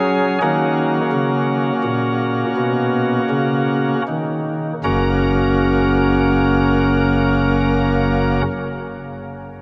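Reverent and majestic, this classical chorale-style excerpt for pipe organ moves at a slow, rubato 38-44 BPM in 4/4 and F# major, tuned to A4 = 444 Hz, easing back in tempo over its first 4.8 seconds before a second section follows. A chamber organ plays alone from 0.0 to 8.4 seconds on a nasal cornet solo stop with chamber voicing, audible chiff and tremulant, sitting up front and spanning F#1 to A#4. The sound is bathed in a wet cathedral reverb with a 5.7-second decay.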